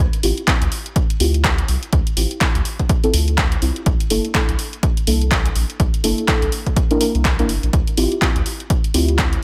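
Deep house at 124 BPM in D minor, a hypnotic fragment with a swung sixteenth feel: a round, nasal analog bass pumps with sidechain and tube saturation, a punchy, tape-warm electronic kick sits up front, an overdriven house kit adds handclaps and hi-hat with a large-room sound, and a soft, detuned, wave-folded chord stab with chorus, delay and sidechain pumping moves through a filter sweep as the harmony shifts from Dm11 to C13 at 3.9 seconds and back, set in light reverb.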